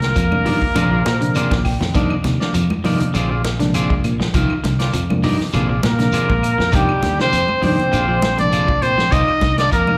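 A live club sound with light reverb carries this funky, defiant afrobeat excerpt at 100 BPM in C minor, where a clear, forceful trumpet with vibrato and a breathy, whispered trombone, both touched by slapback echo, state the melody and a second line at the start and again from 5.9 seconds over two twangy, slightly broken-up electric guitars playing arpeggios and stabs, a dark, round fingered bass, a punchy vintage drum kit with a fill at 0.8 seconds, ringing congas, a grainy, distant shekere, woody claves and a reedy, mellow electric piano cycling between Cm11 and Bb9.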